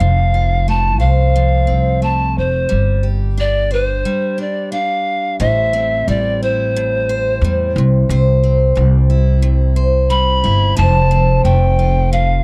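Wistful and tender, this acoustic pop excerpt in A minor moves at an unhurried 89 BPM in a straight 4/4, with a breathy, reedy bamboo pan flute carrying the melody up front, its tongued chiff, vibrato and rolled-off highs set against a short slapback echo. A picked steel-string acoustic guitar supplies warm accompaniment while a woody, thumpy pizzicato upright bass sits prominently beneath, all three playing throughout. The dry, close 1970s-style studio sound frames a chord path from F through Gsus4 to a break at 4.1 seconds, then Am7, C and back to F in the second section from 5.4 seconds.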